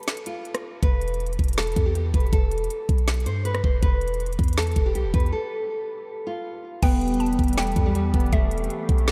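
A lightly reverberant digital ambience frames this menacing, melancholic trap cut, heard in a half-time feel and taken from a longer piece. A bright, fingerpicked nylon-string guitar carries the melody from the start, its classical tone softened by a low-pass filter and trailed by a diffuse ambient delay, while an electronic trap kit sits up front with a knocking kick, woody snare, crisp hats, rim clicks and crash. A deep, boomy 808-style bass with a fast attack and a dark, decaying sine tone joins at 0.8 seconds. The harmony moves between bare fifths and a minor chord with an added eleventh, with an open stretch before a new section at 6.8 seconds. There a round, warbling mallet-like synth pluck with a vintage FM character adds a second line high above, and at 7.0 seconds a glassy, ethereal FM pad with a slow attack, ensemble chorus and phaser swells in on sustained chords.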